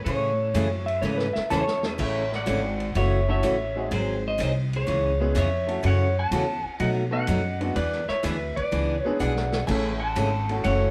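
Western swing country at 125 BPM in A major, cheerful and playful, with a dark, compressed lap steel carrying the melody up front with slide and volume swells, a second fingered lap steel line briefly joining at 0.9 seconds, clear upright piano and a bright, full-bodied picked dreadnought acoustic guitar comping through a Amaj7, F#m7, G#7, C#m7, B7, E7 progression, a thumpy pizzicato upright bass, and a vintage drum kit with dark cymbals and a rolled-off top adding fills, all heard as a band playing live in one room with moderate studio reverb in this cut from a longer piece.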